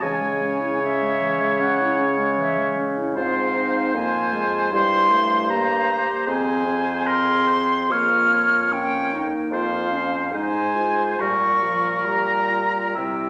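A bright, airy concert flute carries the yearning, solemn melody with vibrato and a soft attack up front, the warm oboe singing a second line beneath it while the mellow French horn and clarinet fill out the accompaniment and a smooth bassoon anchors the bass, all in a slow, rubato romantic wind-quintet movement at 63-78 BPM that moves from C# minor to F minor at 3.2 seconds within a recital hall's reverb, cut from a longer piece.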